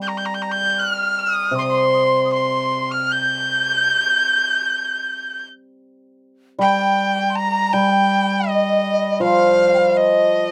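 A lightly reverberant excerpt of Chinese chamber music in G jue mode, tender and graceful at a loose, rubato 78 BPM, where a bright, nasal erhu sings the melody close and up front with light vibrato and portamento, a shimmering hammered dulcimer rings out low accompaniment, and from 0.5 seconds an airy, hollow bamboo dizi with a buzzing membrane traces a mellow second line in the background.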